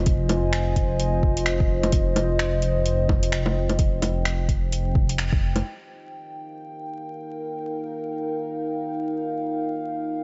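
A dark, detuned analog pad and a rumbling sawtooth bass open this future garage excerpt together, both sitting up front and breathing with sidechain pumping over an Fm7 chord. A layered electronic kick and a deep house kit of bongos, finger snaps and metallic hi-hats join almost at once, all given a tape-warm sheen and studio reverb, with the groove set at 129 BPM in 4/4 and a 60% swing on the sixteenths. The full band hits an accent at 5.2 seconds. The kick falls away at 5.4 seconds, and at 5.6 seconds the rest of the kit and the bass drop out, leaving the moody, chorused pad, its slow attack and long release carrying a moving notch, to hold an Ebadd9 alone until 10.2 seconds. Light reverb, vinyl crackle and a rolled-off top end give the wistful, nocturnal piece a worn, late-night haze, tuned slightly sharp to A4 = 441 Hz.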